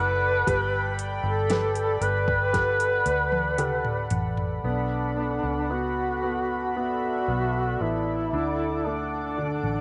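Heartfelt and hopeful, this slow pop ballad is a short passage cut from a longer piece, carried by a mellow duduk that sits up front with gentle vibrato, a soft attack and a distant, roomy folk-style character, touched by tape echo. Beneath it, a woody upright piano with short sustain plays the accompaniment, while a chorused pulse-width pad holds shimmering, retro chords up high. A vintage electric bass, dark and foam-muted yet round and punchy, anchors the low end throughout. An electronic R&B drum kit enters at 0.5 seconds with a soft kick, fat snare and metallic hats, all overdriven, rolling into a fill from 2.5 seconds before dropping out at 4.6 seconds as the harmony moves from Gadd9 to Bm7 and then settles on D. The mix carries light reverb and a gently rounded top end.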